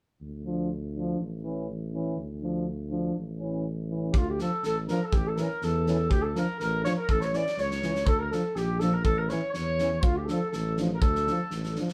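Balkan folk brass band music in 2/4 with a restless, virtuosic mood, this excerpt opens on a mellow, up-front tuba bass and two euphoniums, one of them distant and roomy, trading between D minor and A major chords, before a mellow flugelhorn melody with light vibrato, a clear clarinet second line in the background and a loose acoustic drum kit with a punchy kick and fat snare all enter at 4.1 seconds, everything sounding like a band playing live in one room with moderate reverb.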